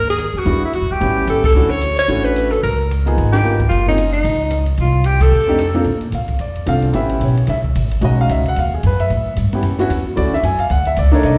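Swinging and sophisticated, this brisk small-group swing and bop jazz excerpt at 223 BPM puts a clear, vibrato-rich alto saxophone on the melody, roomy with plate reverb and slapback echo until it drops out at 5.8 s, over a woody, thumpy pizzicato upright bass, a dry compact cocktail kit with dark cymbals, a high-tuned snare and punchy kick, and an intimate grand piano accompanying with audible action noise, the live gig coming through the venue's PA into a recital hall with a dulled top end and punctuated by band accents over lush extended jazz chords.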